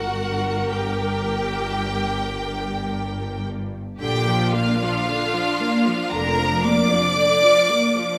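All five string sections sound together from the start of this excerpt from a slow, rubato classical movement for string orchestra in G minor, moving to Bb major at 4.0 s at around 54-58 BPM, solemn and melancholic in mood. Up front, a clear, intense violin section carries the high melody with vibrato over a focused, more distant second violin line and a smooth, even viola accompaniment. Warm cellos sit in the background and a warm double bass section anchors the low end until both drop out at 7.0 s, all within a moderate scoring-stage reverb.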